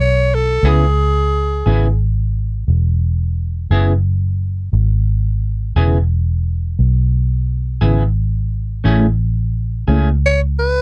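A raspy, growling tenor saxophone opens this brooding, smoky slow blues in C# minor over a round, foam-muted fingered electric bass that sits dark and up front, the horn falling away at 2.0 seconds and returning briefly at 10.3. From 0.6 seconds a clean, picked electric guitar adds accompaniment colored by harmonic tremolo, moving from C#m7 to Amaj7 at a 12/8 pulse of 58 BPM. The dry, close 1970s-style studio sound keeps this short excerpt intimate and smoky.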